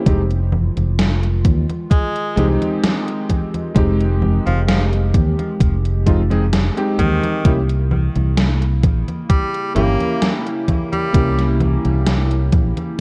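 A dark, cassette-tape haze hangs over this woozy, nostalgic vaporwave excerpt at 65 BPM in F minor, where a warbling, detuned pad holds mellow chords in the background and a vintage electric grand piano with a clangy low end, subtle chorus and tape echo moves from Fm7 to C7b9 at 7.4 seconds. A round, punchy fingered bass sits up front beneath a thumpy, overdriven electronic kick and a gated 80s drum machine whose congas, hi-hat and gated-reverb snare sound re-recorded in a large room. An edgy, forceful tenor saxophone with vibrato and tape echo carries the solo melody from 1.9 to 11.5 seconds.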